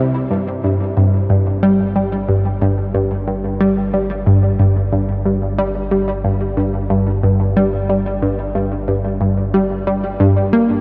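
A straight 4/4 pulse at 91 BPM drives this cosmic, hypnotic fragment of sequencer-driven space music tuned to A4 = 439 Hz, where an up-front, nasal, detuned sawtooth pluck with a noise layer plays a riff through chorus, phaser and tape echo over a deep, round, sustained sine sub bass given tube saturation, both running the full 10.8 seconds inside a huge 8.4-second reverb and the worn, warbling pitch drift of old cassette tape.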